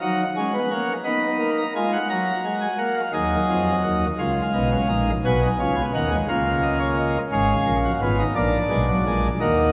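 Driving and serious, this brief fragment of a baroque-style four-part fugue in B major moves at 58 BPM in a straight 6/8, played by a solo pipe organ on full plenum with brilliant mixtures, audible chiff and up-front baroque voicing spanning Ab1 to B5, tuned to A4 = 439 Hz and bathed in a church reverb with a 3.8-second decay, as the harmony moves from D#m/F# through B and F# into a new section at 3.1 s that presses on through C#, A#m/C# and Fdim/Ab to a closing Bb7.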